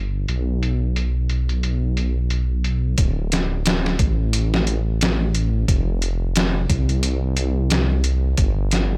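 A dry, close sound with little reverb frames this dark, cinematic trip hop excerpt, which moves at 89 BPM in 4/4 with a 58% swing on the sixteenths and sits in D dorian. A deep, rumbling detuned saw bass opens at 0.0 s, its sawtooth tone mixed with a sine body, beating from the detuning and thickened by tube saturation; it holds the low end from D1 to C2 with a fast attack and sustained notes, placed up front. The sampler-style drum kit arrives at 0.3 s, pitched down, compressed and overdriven, with a thumpy kick, a medium-tuned snare and hi-hat, all muffled by low-pass filtering. Re-recorded in a small room with that room also filtered, the kit stays up front. The piece shifts into a new section at 3.0 s, carrying its brooding, shadowy pull to the end.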